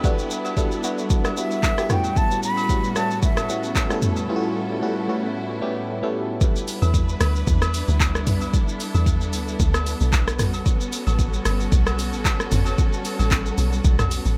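A biting, warbling FM electric piano with phaser and dub echo sits up front in this soulful, late-night amapiano excerpt at 113 BPM in E dorian, joined by a layered deep house drum kit, echoing agogo bells and woodblock in the background, and distant, lush bowed strings, while a breathy concert flute with vibrato sings briefly from 1.4 s, and the piano stops at 6.4 s as a round, dark log drum bass arrives at 6.8 s for the drop in a dry, echo-heavy mix.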